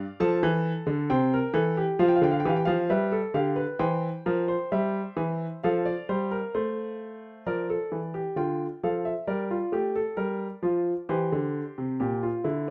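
In a straight 4/4 at 66 BPM, this contemplative, serious baroque-style three-part fugue for solo concert grand piano, tuned to A4 = 441 Hz and cut from a longer piece, unfolds from Bb2 to A5 with a smooth, vintage tone, deep bass and an up-front presence in light reverb, moving from F through G7 and C/E back to F before turning at 7.5 seconds to Dm, Gm7 and C7 until 12.7 seconds.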